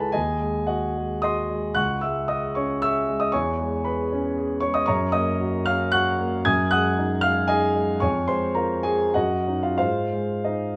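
Close, detailed microphones set a concert grand up front in a moderate recital-hall reverb, its warm tone marked by deep bass, an open sound and long sustain. This romantic character piece for solo piano moves in a flexible, rubato triple metre, and its hopeful mood carries through a passage that is cut from a longer piece and lasts 10.8 seconds. The harmony travels from a G#7 chord through C# minor toward Gb, Db and an Eb minor seventh before arriving on Ab, and the writing spans the keyboard from the low bass up into the high treble.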